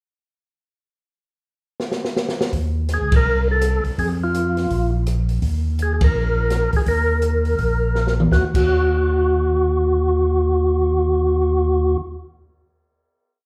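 Soul jazz organ trio in a smoky, late-night mood, swung and heard as a whole piece. An acoustic jazz kit opens with a fill at 1.8 seconds, the drummer keeping time on the hi-hat with sticks over a boomy kick, a medium-tuned snare and dark cymbals, with rim clicks, ride, crash and toms also heard. At 2.5 seconds a fat, lightly overdriven tonewheel organ takes the bass in a two-feel, its slow rotary speaker and chorus vibrato giving a gentle churn under an audible key click. A second tonewheel organ carries the melody in short song-like motifs, its percussive second-harmonic attack and overdriven, rotary-swirled tone sitting up front beside the bass. The band hits a pair of accents together, the drums drop out at 8.6 seconds after a last fill, and the organs hold a closing minor chord, everything placed a little back in a large studio with a moderate reverb.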